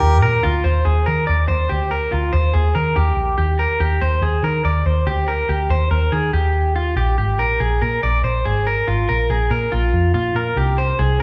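Recorded in a church or concert hall with a wet recital hall reverb, this bright, breezy excerpt of jangly indie pop at 142 BPM in 4/4 pairs a twangy, slightly broken-up electric guitar through a small old amp playing up-front arpeggios with a dark, round, foam-muted vintage picked electric bass, both sounding for the full 11.2 seconds over chords moving from Ebadd9 through Eb6 and Bb5 to C5.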